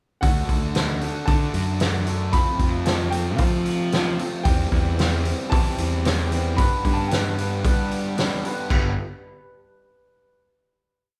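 A loose indie drum kit drives a straight 4/4 rock groove at 113 BPM, up front with a punchy kick, dark cymbals and a gritty, saturated edge, while a round fuzz bass, equally forward, locks to the kick. In this short, upbeat but wistful indie rock piece in G major, two electric guitars in the background push driving eighth-note open chords through D, F, C/E and G: one bright and overdriven, the other twangy and slightly broken-up through a small old amp with spring reverb. A woody upright piano sings a motif-based melody until 7.9 s, before the band, playing live in one large, reverberant studio room, lands on a final chord at 8.7 s.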